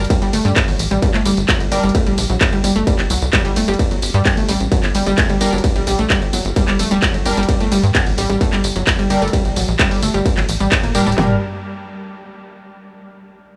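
A distorted kick and cracking snare from an up-front techno drum kit lead this driving, hypnotic peak-time techno cut, taken from a longer piece, with its handclaps and toms layered over an analog drum machine whose hi-hat, ride, tambourine and claps pump against the sidechain. Beneath, a tight, wave-folded sequencer bass with a moving notch pulses low, while a round, detuned analog pluck plays a compact riff through chorus and dub echo. An edgy sync-sweep polysynth with a nasal, bright sweep flickers briefly at 1.7 s, then returns with sustained stabs from 5.4 s through a band accent at 10.7 s to the end, all set in a light small-room ambience.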